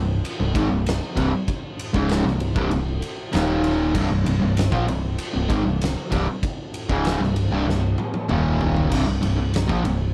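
The sound is dry and close, with little reverb, and the fuzz guitar and drums sit up front in this short cut from a longer stoner and doom metal piece. A double-tracked fuzz guitar carries the riff from the start, its warm, distorted, picked tone sitting low as it shifts between C5 and Eb5 power chords in a straight 4/4 pulse. Beneath it, an overdriven picked electric bass gives a round, dark foundation, coming direct and through an amp. The oversized, low-tuned acoustic kit enters at 0.2 seconds with a boomy kick, a fat snare, dark cymbals and a gritty, saturated, pumping room sound, and it works through crash, ride and toms. A drum fill from 7.7 to 8.9 seconds marks the one event before the riff settles back on C5, and the mood stays hypnotic and ominous throughout.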